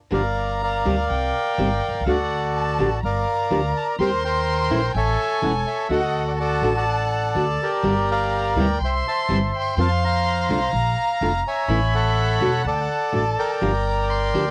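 From the first moment, a reedy, up-front bandoneon carries the melody of this dramatic, tense tango excerpt with a rubato feel, while a distant, bowed solo violin adds an expressive, warm second line with vibrato and portamento, a dark, full-bodied fingerpicked nylon-string guitar supplies the accompaniment, and a woody, thumpy pizzicato upright bass sits up front beneath them, with the bandoneon, violin and guitar carrying a cassette-tape tint in a lightly reverberant home recording.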